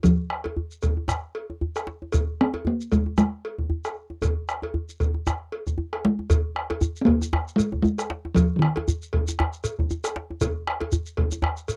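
A lightly swung sixteenth-note groove in four gradually speeds up throughout this festive, powerful West African drum ensemble passage, cut from a longer piece. Up front, a close talking drum with a short ring carries the melody until 10.1 seconds, over a round, vintage bombo that stops at 11.6 seconds and a medium-tuned djembe played with soft hands. A metallic, band-limited cowbell and a grainy, mellow shekere complete the dry, close booth sound of a 1970s-style studio recording.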